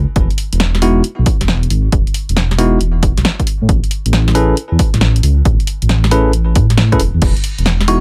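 A dark, detuned saw bass with tube saturation rumbles up front from the opening of this soulful, sunny two-step UK garage excerpt, joined at 0.2 seconds by a layered electronic kick and a tape-warm analog drum machine with a punchy snare, hi-hat and crash. From 0.8 seconds a bell-like tine electric piano plays bright, clean stabs, roughened by vintage 12-bit sampler grit and digital delay, over chords moving from E to Amaj9 and Emaj9, while a glassy, chorused FM synth bell flickers in on a single high note at 7.9 seconds. The swung groove sits dry and close, with little reverb.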